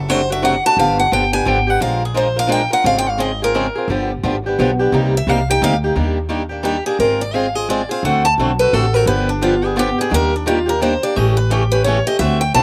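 A brilliant, boxy steel-string parlour guitar opens this bittersweet, swinging jazz manouche waltz, playing the melody up front over a woody, thumpy upright bass with dark gut strings plucked pizzicato. A picked swing-style acoustic guitar with fresh strings enters at 0.1 seconds as accompaniment, its part carrying a slapback echo. The lead guitar solos through two passes of the same theme, the second beginning at 6.0 seconds, over a rich run of seventh chords in a dry, open-air sound, in a fragment cut from a longer piece.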